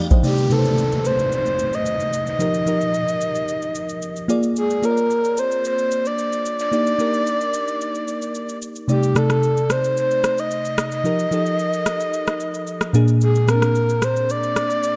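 A darkly tinted, lightly reverberant mix sets a hypnotic, late-night mood for this 15-second amapiano cut, moving at 111 BPM in a straight 4/4 in C dorian. A bell-like FM electric piano sits up front from the start, its sparkling, fast-attack tones decaying over a chorus-treated shimmer as it carries the harmony through Cm69, F9sus4, Bb7 and Ebmaj7/Bb. An electronic shaker and rim click keep the pulse at a lower level, while a downlifter sweeps through the opening seconds and is gone by 4.6 seconds. The melody comes from a breathy, flute-like synth lead that enters at 0.3 seconds, its soft attack and sustained notes colored by vibrato, a sub octave, chorus and delay. Sitting between G4 and Eb5, this lead shares the front of the mix with the electric piano as the chord cycle repeats, giving the piece a mellow, gently circling feel.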